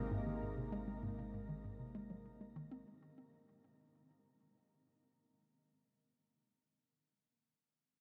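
A brief fragment of mysterious, cosmic space music opens on an Abadd9 chord, with a bright, swirling sawtooth pad, phased and chorused up front, alongside a bouncy, hollow square-wave pluck riff carrying chorus and delay, a round sine sub bass, and an airy, breathy wind-like noise texture floating high above. A filter sweep moves across the synth arpeggio sound as the passage fades out, the mix soaked in a huge, dreamy reverb. Very quiet beneath it all, mellow, ringing fingerpicked harp arpeggios carry on alone after the other parts stop near 2.9 s, lasting until 5.8 s.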